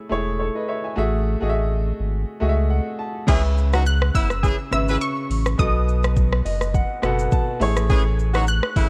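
Smooth, mellow afrobeats in C# minor at 104 BPM with a lightly swung groove: a clear, boxy grand piano and a round, up-front sub bass open over seventh chords, the piano adding short fills, before an electronic drum kit with a deep kick, metallic hats, rim clicks and shaker arrives alongside a tight, warm horn section with light vibrato at 3.3 s, and a bright, detuned analog pluck carries the high melody with chorus from 3.9 s, all on a dry, worn old cassette tape sound with warbly pitch drift.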